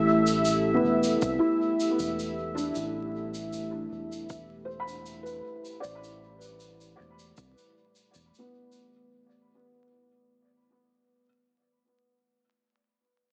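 A moody, full-bodied ambient pad holding an Am11 chord opens this deep, meditative ambient dub piece at 78 BPM, joined at once by a round, dark analog bass, then a rolled-off shaker trailing dub echo and a tape-warm electronic kick. A felt-muted upright piano, boxy and intimate, plays arpeggios through a low-pass filter sweep and tape echo, carrying on alone after the pad and shaker stop at 8.9 seconds and ringing out to 11.2 seconds. The passage fades out in a huge ambient reverb, with vinyl crackle and a small-speaker sound.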